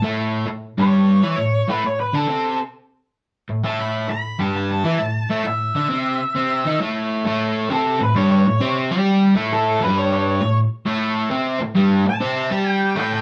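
A bright, overdriven semi-hollow guitar riff sits up front from the first second, double-tracked and picked with a raunchy bite, while a dark octave-fuzz lead guitar carries the melody above it in the same span. This driving rock cut moves at 133 BPM in 4/4 with a swung eighth-note feel, and the two guitars play straight through both sections until 13.2 seconds, the second section arriving at 7.3 seconds. The band sounds captured live in one room, with a moderate studio reverb giving the guitars some air.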